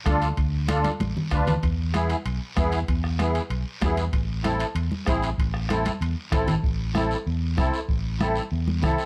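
A reedy musette accordion sits up front in this passionate, danceable cumbia, its shimmering, band-limited tone giving the short excerpt a vintage character as it carries the accompaniment in the middle register. Beside it, a dark, round fingered electric bass, also up front, anchors the low end with an amped sound. Underneath, a small-room bombo struck with a soft beater joins thick-skinned, hard-handed congas and a raspy guiro, with the congas sitting close and dry in the background. Ringing metal-shell timbales add color, drum fills arrive around 0.7 and 5.9 seconds, and the timbales drop out at 6.6 seconds as the piece moves into a new section. The harmony moves from D minor through E major to A minor, and the overall production is dark and warm with a light touch of reverb.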